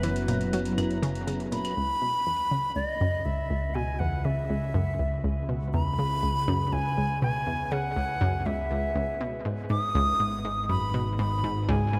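Ambient, sequencer-driven space music in C# minor at 121 BPM in a straight 4/4, cosmic and expansive in mood, taken from a longer piece. A breathy silver concert flute carries the melody up front, close-miked with a straight, tongued tone and a trail of tape echo, ranging from B4 to D#6. Beneath it an analog pluck plays a bright, detuned riff with a fast attack, short decay, chorus and tape echo, while a fat, nasal analog bass made thick by tube saturation holds the low end between F#1 and C#2. An evolving wavetable pad sits in the background, morphing and warbling through phaser and its own reverb, and an ambient pad fades in from 1.8 s as the harmony moves from F#7sus4 to C#m7 and then to G#m7 at 9.7 s. Electronic hi-hat and claves with metallic, tape-warm hats tick only through the opening 1.7 s, and a moderate plate reverb lends the whole a spacious sheen.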